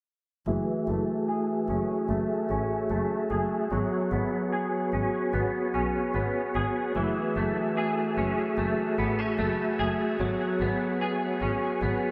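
Melancholic and haunting, this dream pop excerpt drifts at 74 BPM in 4/4 with a straight feel, set in F# minor and tuned slightly low to A4 = 438 Hz. A percussive tonewheel organ sits up front with soft, flute-like sustained chords, its third harmonic percussion and fast rotary speaker colored by a low-pass filter. Beside it, a clean semi-hollow electric guitar picks arpeggios with a hollow-body tone, thickened by ensemble chorus, tape echo and its own low-pass filter. Underneath, a bowed double bass carries an earthy, distant line with light vibrato, ending at 11.9 seconds while the organ and guitar ring on to 12.1 seconds. The harmony moves between F#m9 and C#7sus4/G#, a filter sweep runs throughout, and the whole mix is soaked in a huge ambient reverb with an 8.5-second decay.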